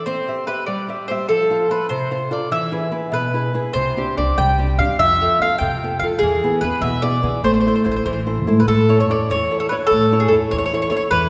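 A picked mandolin with doubled strings carries the melody up front from the very start, its woody tone giving this Italian folk serenade a wistful, passionate voice. Underneath, a small-sounding, fingerpicked nylon-string guitar provides the accompaniment, also close and present, moving through C, F and E before settling toward A minor. The piece sways in 6/8 with a straight feel at 98 dotted-quarter beats per minute. A pizzicato upright bass on steel strings enters at 3.7 seconds, adding a dark, growly low end. At 8.7 seconds the harmony turns to A major and a new passage begins. A wet scoring-stage reverb with the resonance of a church or concert hall surrounds this short fragment of a longer piece.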